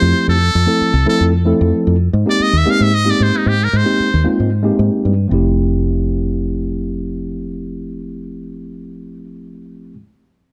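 A dark, warm mix opens this funky, slick electric jazz fusion fragment in a straight 6/8, where a buzzy, metal-muted trumpet with light vibrato and scooped notes plays a forceful solo melody bathed in plate reverb until 4.3 seconds, over a worn, slightly out-of-tune tine electric piano, also on plate reverb, moving from Fmaj9 to Abmaj9 and back, and a round, woody fretless electric bass sitting up front.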